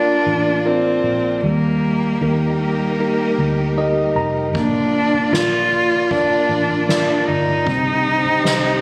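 A dark, bowed solo cello carries the melody from the first second of this heartfelt pop ballad in Bb major. It sits up front with a smooth, even vibrato and a slightly boxy tone. Beneath it, a clean tine electric piano plays through its built-in speakers. A distant studio string section holds soft-attack chords in the background, with expressive vibrato and portamento. A round, punchy, foam-muted fingered electric bass anchors the low end, and the harmony moves from Bb to Eb and back to Bb before touching Cm. The electric piano adds a fill at 3.4 seconds. At 4.5 seconds a soft-mallet acoustic drum kit enters with a fat snare, a boomy kick and toms, and the electric piano closes with another brief fill at 8.4 seconds. The slow 77 BPM pulse and the sound of a phone recording in a small room, with light club reverb, give this emotional fragment of a longer piece an intimate, live feel.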